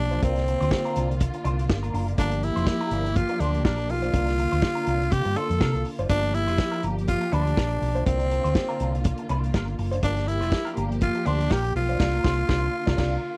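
Disco at 122 BPM with a lightly swung sixteenth feel, glamorous and celebratory, this short cut from a longer piece circles between C9sus4 and Gm7 as a raspy, growling tenor saxophone carries the melody up front over a tight-kicked soul drum kit and a round, dark hollow-body bass. A clean, scooped semi-hollow guitar colored with wah and analog chorus adds accompaniment, while a lush, woody string section holds bowed chords with vibrato beneath. The dry, close 1970s-style studio sound keeps every part immediate, and the band hits an accent from 12.0 seconds to the end.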